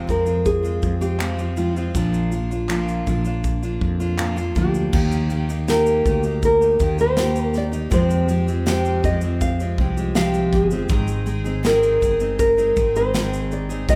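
A dark, small-bodied nylon-string guitar carries the fingerpicked melody in this heartfelt, sunny acoustic pop excerpt at 80 BPM in Eb major, moving over Fm, Bb, Eb, Fmadd9 and Ab. A bright, full-bodied picked steel-string acoustic sits up front in accompaniment, a round, punchy fretless electric bass anchors the low end, and a polished studio kit with a punchy kick, medium-tuned snare, finger snaps, shaker and crash enters at 0.1 seconds. A hollow, vintage group handclap sits in the background from 1.2 to 4.4 seconds, all set in the wet reverb of a church or concert hall.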